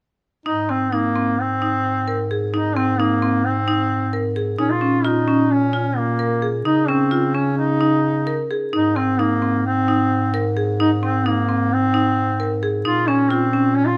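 A clear duduk carries the melody in a folk style, its light vibrato and scooped notes set back in a roomy space, while a marimba with hard mallets spins bright, woody arpeggios over a dark, close-miked bass clarinet holding the low line. This shimmering, restless contemporary chamber piece moves in 9/8 at 262 BPM counted in eighths, in A-flat major, cycling through Abadd9, Bbm and Dbsus2. Light reverb and close, detailed microphones frame this fragment cut from a longer work, with all three parts sounding together from 0.5 to about 14.0 seconds.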